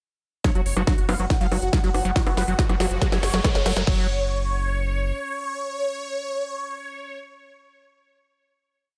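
At 0.4 s a psychedelic, alien trance build at 140 BPM bursts in with a punchy four-on-the-floor kick, an overdriven techno kit of cracking snare, smooth hats, bongos and crash, a screaming, squelchy distorted acid line looping three steps against the bar, a bright pulsing gated texture holding a high F#5, and a huge detuned supersaw repeating its riff over a pedal note through phaser and delay, joined by a round, rolling analog bass, a very quiet formant-sweep wobble bass and a background riser, until at 3.9 s the build gives way to the supersaw's final chord ringing on to 7.2 s.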